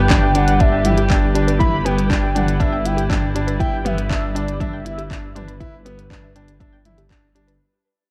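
This piano-and-strings electronica drop at 120 BPM opens with a velvety, chorused synth lead carrying the melody over dark, distant sul tasto string chords and a deep, detuned saw bass, both pumping with sidechain, while a warbly, lo-fi pluck traces very quiet arpeggios on an Em/G chord. From 0.1 seconds a bright grand piano with audible action noise plays a riff, alongside an overdriven electronic kick re-recorded in a large room and a minimal kit of clicky hats, handclaps and toms. The mood is hopeful and tender, and light reverb gives the dark production a cozy glow as the passage fades out across its 7.6 seconds.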